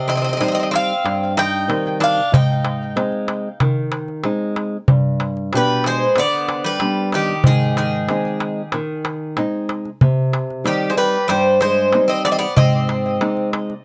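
Two picked bouzoukis with doubled, partly octave-strung courses open this brooding, cool Greek folk passage: a bright, metallic lead with tape echo sits up front above a warm second line, while a small, dark fingerpicked nylon-string guitar accompanies. A crisp metal-shell darbuka, close and dry and struck with hard hands, enters at 0.1 seconds in a straight 4/4, under light reverb and detailed close miking. The harmony moves through Cm, Ab and G, with a new section starting at 4.9 seconds, in a fragment cut from a longer piece.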